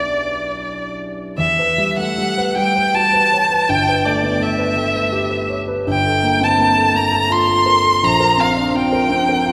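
A bowed violin and a concert grand piano begin together in this hazy, mysterious impressionist classical duo, taken from a longer piece and moving in a flexible, rubato three-four. The violin carries the melody high in its range with smooth, even tone and vibrato, sitting up front yet with a slightly distant quality. Beneath it, the piano supplies an intimate, natural-sounding accompaniment reaching down into deep bass, with the mechanical noise of its action audible up close. The opening gives way to a new section at 1.4 s, where the harmony drifts through lush extended chords such as Emadd9, G69 and Gm9 before settling on A#69 at 8.0 s. A generous church reverb surrounds both instruments, blurring their edges into a dreamy, resonant haze until the passage breaks off at 9.5 s.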